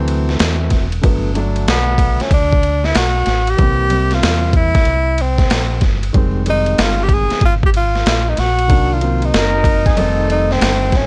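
Mellow and cool, this jazz-hop cut from a longer hip hop piece moves at 94 BPM in 4/4 with a lazy 16th-note swing, tuned slightly flat of standard pitch. A breathy tenor saxophone carries the melody up front in a jazz-style solo, its subtone sound colored by light vibrato and scooped notes. Beneath it, a dark baby grand piano supplies mellow accompaniment while a deep dub fingered electric bass adds round, punchy low end. The boom bap sampler-style kit sits forward with a gritty, compressed character, a thumpy kick and a high-tuned snare alongside hi-hat and ride, its sound re-recorded in a large room. Near the close, at 9.3 seconds, a distant silver concert flute slips in briefly with an airy, tongued second line touched by vibrato. The chords drift from D7 through Gmaj7, C7, Fm7 and Cm7b5 to F7, all in a dry, close mix with little reverb.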